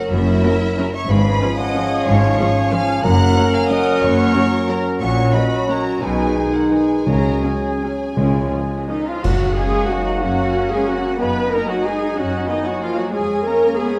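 A lush violin section carries the melody of this elegant, sweeping orchestral ballroom waltz in F# major, bowed with expressive vibrato and a soft attack, while a second, more focused violin line sits in the background. The 3/4 pulse moves between 155 and 203 BPM with a rubato feel, in a passage cut from a longer piece. Beneath, a smooth viola section and a warm cello section fill out the harmony over a double bass section, as a mellow French horn section holds sustained chords and a tight, bright trumpet section adds stabs in the background. A clear clarinet, a hollow silver concert flute and a bassoon with light vibrato trace second lines and accompaniment behind the strings. Timpani struck with hard mallets sound at 3.0 seconds and again from 7.1 seconds, joined there by cymbal swell, clash cymbals and concert bass drum, and the ensemble lands an accent at 9.2 seconds as the harmony returns to F#. 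A recital hall reverb gives the dark production its sense of space.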